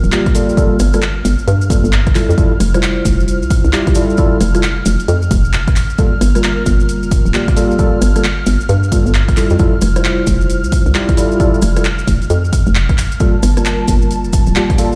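UK garage in a two-step groove, this bouncy, skippy piece moves at 133 BPM in G dorian with a swung 16th-note feel, cut from a longer track. A hollow, knocking FM bass with a fast attack and decaying tail sits up front beside a punchy, tape-warm electronic kick drum, while an analog drum machine adds handclaps, hi-hat and rim click. A mellow tine electric piano plays clean stabs through analog chorus and digital delay, with a filter sweep running across the full 15 seconds. Above it, an airy, breathy pad with a detuned, nasal edge holds sustained chords, pumping under sidechain compression, and grainy maracas sit in the background. The harmony shifts between Gm9 and Fmaj9, and the mix carries little reverb, as if played on a big sound system in a bare room.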